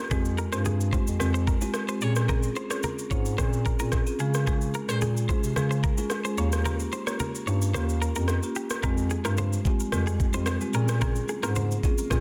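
A dark, punchy bass clarinet sits up front, carrying the low end beneath a mellow, hypnotic afrobeats groove built on an electronic afro-pop kit with a knocking kick, rim clicks and shaker, while close, dry congas and bongos murmur very quietly underneath. A close-miked marimba with medium mallets fills in the harmony over a chord cycle that begins on Fmadd9, and a bright, twangy clean electric guitar picks a compressed riff dressed in spring reverb and delay. The kick drops out from 6.7 to 8.8 seconds, and at 9.9 seconds a very quiet, blurred granular pad drifts in with slow, evolving sustained chords in this short cut from a longer piece.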